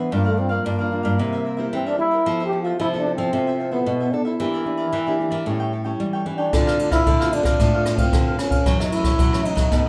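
Festive and lively, this samba and choro excerpt at 112 BPM sets a breathy, mellow trombone melody with light vibrato over crisp picked cavaquinho, a full-bodied fingerpicked nylon-string guitar and a second nylon-string guitar carrying the bass line through jazzy chords such as Gm7, Fmaj7#11 and A7, until a brushed drum kit with dark cymbals and a boomy kick joins at 6.5 seconds, all played live together in a large studio room.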